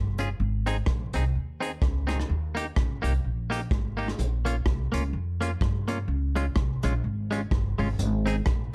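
A lightly swung 4/4 pulse at 126 BPM drives this joyful, cheerful ska excerpt, with a woody pizzicato upright bass up front beside a vintage brush drum kit of punchy kick, hi-hat and rim click in a small, pumping room, while a bright, twangy, compressed clean electric guitar picks its accompaniment through Ab, Eb, Bbm and Db in a dark, dry production.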